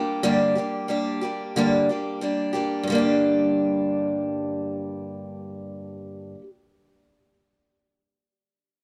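A picked steel-string acoustic guitar carries this short rock fragment alone, sitting up front with a bright, boxy parlour-guitar character and the occasional finger squeak audible on the strings. The mood is reflective and wistful, moving at an unhurried pace in a straight four-beat feel. The guitar covers a low-to-middle register and plays for the full 6.5 seconds, with the passage shifting into a new section at 2.9 seconds. A light reverb surrounds the instrument, while the overall production leans dark and warm, giving the bright strings a softer frame. Cut from a longer piece, the clip feels like a brief, intimate glimpse of a larger song.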